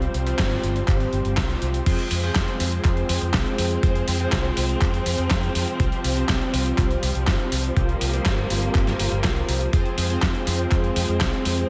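Melodramatic and bittersweet, this italo disco excerpt in F minor moves at 122 BPM in a straight 4/4, with distant, bowed studio strings holding sustained chords, a glossy chorused polysynth firing stabs through delay, a bright, punchy fingered electric bass with an envelope filter and tube saturation, a gritty, overdriven dusty soul sampler-style kit of crash, handclaps, hi-hat and snare under gated reverb, and a thumpy overdriven electronic kick entering at 0.4 seconds, all set in light digital ambience as the harmony shifts from Csus4 to Fm.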